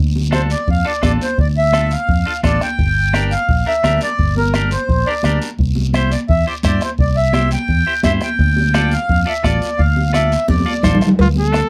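A round, dark fingered electric bass opens this fiery, danceable cumbia fragment, joined at once by distant, high-tuned congas, a close, dry bombo, a faint raspy guiro, a clean, picked semi-hollow electric guitar and an up-front, reedy accordion carrying the melody, until a drum fill at 10.5 seconds leads at 11.2 seconds into a brief vibrato trumpet line and a ringing cowbell joining in the background, all in a close, 1970s-style studio sound.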